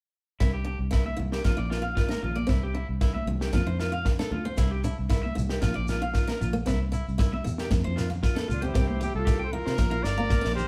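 A tight funk drum kit sits up front in this carefree, joyful highlife guitar band excerpt, its high-tuned snare and tight kick driving a straight 4/4 feel, with the round, foam-muted fingered electric bass close beside it. A slightly broken-up, twangy electric guitar spins arpeggios over a picked steel-string acoustic guitar accompaniment as the chords move between C, Bb and F. Ringing, high-tuned congas join very quietly at 1.1 s, and a grainy, mellow shekere slips into the background at 4.6 s. During a drum fill, a bright, forceful, close-miked trumpet takes up a jazz-style melody at 8.5 s, shadowed by a second line from a distant alto saxophone with vibrato. The band plays live together in one stone room, whose moderate reverb gives the ensemble a natural, roomy sound.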